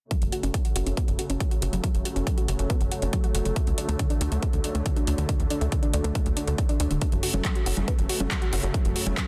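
A punchy, overdriven electronic kick sits up front and drives this euphoric, soaring slice of uplifting trance at 139 BPM in 4/4 and F# minor, cut from a longer piece. Beneath it, a tight sequencer bass with a saturated, wave-folded sawtooth edge and a moving notch pumps against the kick from 0.2 to 9.1 s. An analog pluck plays arpeggios across a broad register, its detuned, warbling vintage tone thickened by chorus and trailed by tape echo. A dark string section holds lush, woody bowed chords with vibrato, pumping with the sidechain while a low-pass filter sweep runs across its full span. The layered drum kit adds congas, handclaps and metallic hi-hats with overdrive, and the chords move from F#m to D at 3.6 s and back to F#m at 7.0 s. The sound is dry and dense, with a heavily limited modern master.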